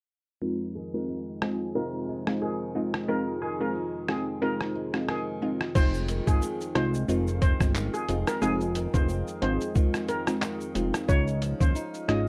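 A dark production with a moderate studio reverb gives this tough, hypnotic dancehall excerpt a murky weight. At 90 BPM in F minor with a lightly swung 16th feel, a metallic, shimmering steel pan carries the melody over a crystalline wavetable pluck treated with chorus, sidechain pumping and a low-pass filter. Beneath them, a fingerpicked flamenco guitar adds acoustic arpeggios through tape echo, and a filter sweep runs across the opening section. The compressed, pitched-down lo-fi sampler-style drum kit arrives up front at 1.4 seconds, its thumpy kick, hi-hat, rim click, handclaps, shaker and crash cymbal sitting over a very quiet, moody ambient pad with a slow attack and phaser. At 5.8 seconds the second section brings in a fat, saturated sawtooth analog bass along with ringing tube shaker and timbales in the background. The harmony rests on Fm7 before moving to Dbadd9 near the close.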